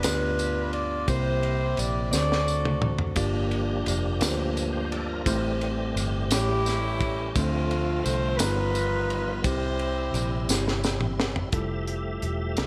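A mellow saxophone section carries the melody up front with a light vibrato, playing in two phrases over this short excerpt of slow, soulful and hopeful gospel in a straight 6/8. Beneath it, a worn, slightly out-of-tune tine electric piano supplies the accompaniment, while a dark, foam-muted fingered electric bass sits round and forward in the mix. A tight funk drum kit, muffled and gritty with a high-tuned snare and a rolled-off top, keeps time alongside a jingly, band-limited tambourine, and the drums play fills at 2.1 and 10.5 seconds. A full tonewheel organ enters at 3.2 seconds with sustained chords through a slow rotary speaker and chorus vibrato. The harmony moves through a chain of seventh chords before settling on C, and at 11.5 seconds a dark, soft-attacked French horn section joins in the background on a closing Fmaj9. Light studio reverb adds a gentle touch of space to the whole.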